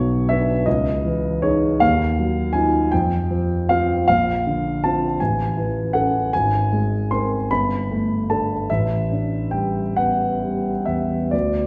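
A concert grand sits up front in a resonant church or concert hall, its deep bass, long sustain and audible action noise giving this brief 11.7-second passage an intimate, natural presence. The serene, luminous impressionist solo moves in a slow, rubato 6/8 at roughly 42-55 BPM, drifting through soft-edged chords such as Bmadd9, Fsus2 and A9sus4 across a range from G1 to B#5. Cut from a longer piece, it feels like a moment suspended in the hall's lingering glow.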